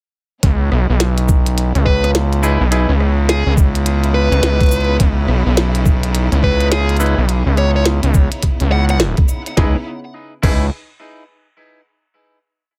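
Gritty, funky glitch hop at 105 BPM in C# minor, built on a swung drop from 0.4 seconds where a thumpy, pitched-down electronic kick and an overdriven glitchy kit of tiny snare, clicky hats, rim, shaker and crash drive chopped phrases from a saturated, up-front sawtooth synth bass. A dark, overdriven lead guitar plays short answering phrases through digital delay, a bright semi-hollow electric guitar drops sparse echoing rootless chord stabs with sidechain pumping, and a lush, biting string section sits distant in the background holding C#m9 with sidechain pumping of its own. After a band accent at 9.0 seconds, the piece closes on a final chord from 9.6 seconds in a dry, close mix.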